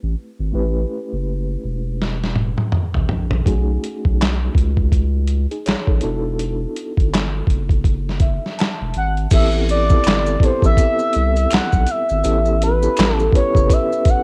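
R&B and neo-soul at 82 BPM with a 16th-note swing and a sultry, soulful mood, this short cut from a longer piece opens on a reedy electric piano with fast tremolo and cassette grit, sounding as if through built-in speakers, over a deep, thick, saturated sine sub bass, moving through Am9, A9, B13 and E7sus4. A gritty, pitched-down boom bap kit with a thumpy kick and medium-tuned snare enters at 2.0 s with a fill, sitting up front with a large-room character, and the piano takes its own fill before the second section. From 9.0 s a smooth, dark sawtooth-and-triangle synth lead with chorus and vibrato carries the melody, while band-limited vintage maracas, snaps and group handclaps sit in the background of a home-cassette sound with digital ambience.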